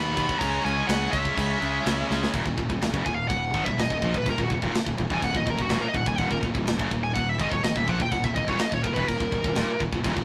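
A straight 4/4 pulse at 125 BPM drives this dark, epic heavy metal excerpt in Eb phrygian, where two bright, distorted rhythm guitars (one sitting in the background) pound out the riff over a growly, punchy fuzz bass and a tight, mid-forward drum kit with crash, kick and snare entering at 0.2 seconds, while an up-front high-gain lead guitar carries the melody and, after a drum fill at 2.1 seconds, breaks into a solo from 2.3 seconds over Dbm moving to Eb5, all captured with light reverb and tube saturation in a rough rehearsal-room sound.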